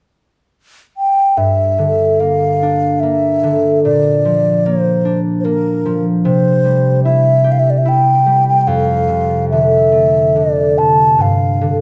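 Celtic slow air in G dorian at 73 BPM in a rubato 3/4, where a hollow, airy wooden flute with a straight tone and soft attack carries a longing, mournful melody from 1.0 seconds, joined at 1.4 seconds by a ringing, fingerpicked concert harp moving through Gm, Bb, C and F6 chords, both up front in a moderate recital hall reverb, in this excerpt cut from a longer piece.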